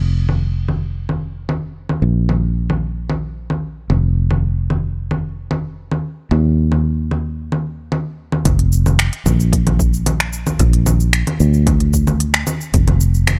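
Sunset chillout with a wistful, relaxed mood, this short excerpt cut from a longer piece moves in a straight 4/4 feel. A fingered electric bass opens at 0.0 seconds, sitting up front with a dark, round, foam-muted tone that comes across direct and amped, moving between F1 and Eb2. A smooth R&B drum kit joins at 0.3 seconds, built from cabasa, congas, finger snaps and crisp hi-hat, with an overdriven, produced edge and low-pass filtering softening its percussion, snare, hats and cymbals. At 8.5 seconds the music shifts into a new section as a punchy, layered electronic kick drum arrives, playing until 12.9 seconds. The recording has a dry, gritty hardware character with transformer saturation and a digital ambience around the parts.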